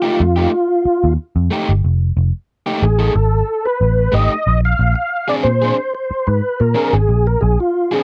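A strutting, gritty funk snippet cut from a longer piece, where a lightly overdriven tonewheel organ takes the lead with key click, chorus vibrato and slow rotary shimmer over crunchy picked electric guitar and a round, dark, foam-muted bass that enters at 0.2 seconds, all captured in a dry, close 1970s-style studio sound as the harmony moves from F9 to Bb9 at 4.5 seconds.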